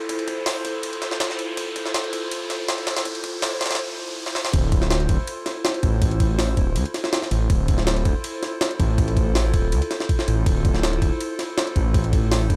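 This is a raw, frenetic drum and bass cut in the jungle style, taken from a longer piece. A warbling, lo-fi pad holds sustained chords throughout, its detuned square and triangle tones softened by chorus, built-in reverb and a vintage 12-bit sampler grit that lends a nostalgic, mellow haze. An electronic riser carries the opening build-up, while a sampler-style jungle kit, pitched up and compressed with a thumpy kick and a high-tuned snare, comes in at 0.1 seconds. A short break from 3.8 seconds is punctuated by a drum fill at 4.3 seconds. At the drop at 4.5 seconds, a thick, menacing detuned saw bass enters with a fast attack and tube saturation, its beating low end sitting up front beside the drums as the harmony moves from Fmaj7/E to Dm7. The mix is dry and gritty, with the feel of a hardware recording.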